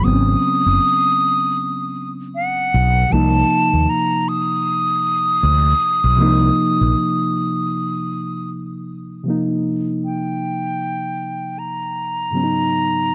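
A lazy 16th-note swing at 78 BPM in 4/4 carries this sultry, soulful neo-soul R&B fragment. A breathy, close-miked silver concert flute sings the expressive, straight-toned melody up front, while a reedy electric piano comps beneath it through its built-in speakers with a touch of spring reverb, moving from a rootless Abm7 through Cm7 to Fsus2 and Abm9. A growly, punchy fretless electric bass joins at 0.1 s and drops out at 6.9 s, all captured in a dry, close 1970s-style studio sound.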